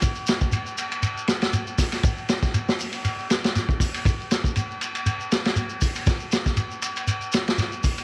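An eight-second excerpt of afrobeat opens with a vintage drum kit and a shekere playing together from the very first moment, setting a funky, driving mood in 4/4 with a light swing on the sixteenths. The acoustic kit sits up front and mid-forward, with a punchy kick, a medium-tuned snare, hi-hat and ride cymbal, its dark cymbals and rolled-off top giving it a warm, vintage character. Beneath it, the shekere sits a little further back, its grainy, mellow tone adding texture to the groove. Both parts carry on together for the full eight seconds as a single passage. Light reverb and a small room ambience give the pair a close, intimate sound.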